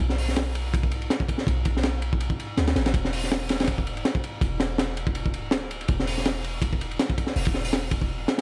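A crunchy breakbeat drum kit sits up front in this short drum and bass and jungle excerpt at 163 BPM, its punchy kick, high-tuned snare, hi-hat and dark ride cymbal sounding saturated and gritty with a rolled-off top, swung lightly on the sixteenths. Beneath it, a deep, boomy 808-style bass with a sine tone, a noise layer and a fast, decaying attack keeps to a mellow low range from D1 to D2. The dry sound carries a vinyl crackle that lends the piece a nostalgic, atmospheric mood.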